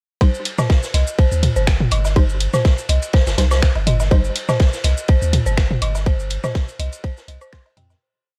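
Minimal techno with a cool, clinical mood, where an up-front four-on-the-floor electronic kick sits alongside a punchy sine sub bass riff with a pitch-drop attack, a techno drum kit of programmed hats, shaker and finger snaps, electronic toms and woodblock clicking in cross rhythm, and a gritty, saturated garage breakbeat of ride and snare, while an eerie, inharmonic FM bell repeats its 16-step sequence through chorus and tape echo and sparse, crisp wavetable chord stabs echo until 4.2 s before the dry groove fades out from 5.4 s.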